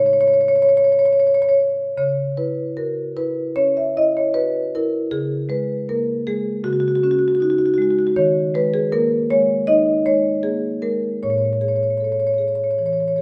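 A rubato pulse around 77 BPM in 4/4 carries this contemporary classical piece for solo marimba, an excerpt cut from a longer work in C# dorian. The mood is flowing and hypnotic, with the marimba alone for the full 13.2 seconds, played with soft mallets across a range from A2 to E5. Its rosewood bars sound woody, mellow and round, with an airy quality, sitting up front in a recital hall whose wet reverb lingers for about 1.5 seconds. A brief opening passage rests on C#sus2 before the music settles into a longer section at 2.0 seconds, moving through C#m, C#sus4 and D#sus4. The harmony arrives at Amaj7 at 11.2 seconds for the close.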